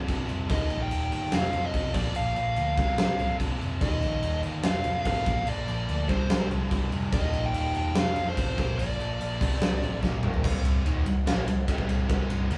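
Heavy and driving, this hard rock excerpt runs at 145 BPM in 4/4 with a straight feel in C minor. A huge arena drum kit sits up front with a fat snare and punchy kick, crashing and riding across crash, ride, snare and toms, and a drum fill at 10.0 seconds leads into a closing passage on C minor. Underneath, a picked electric bass growls with a bright, amped edge, while three overdriven guitars churn out the riff from the start: a double-tracked distorted guitar and a sludgy one in the background, plus a second sludgy guitar kept very quiet. A biting lead guitar cuts through up front from 0.5 to 10.0 seconds over a cycling progression of C5, Eb, F and Bb chords. The band sounds like it is playing live together in a small stone room, with moderate reverb giving the mix a raw, enclosed ambience.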